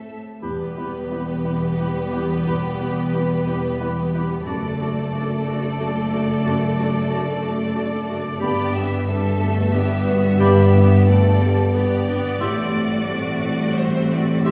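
A lush, expressive violin section carries the sorrowful melody of this moving, cinematic film-score excerpt in E minor, unfolding in a rubato 3/4 around 90 BPM over a progression from Em through D/F# and G to Am7. A second violin line, smooth violas and a rich, distant bed of cellos and double basses frame it, while a soft, felt-muted upright piano adds intimate accompaniment. From 0.4 seconds a very quiet, airy flute joins, along with a clear clarinet, a warm cor anglais and dark, roomy French horns in the background, all bathed in a recital-hall reverb heard from further back in the room.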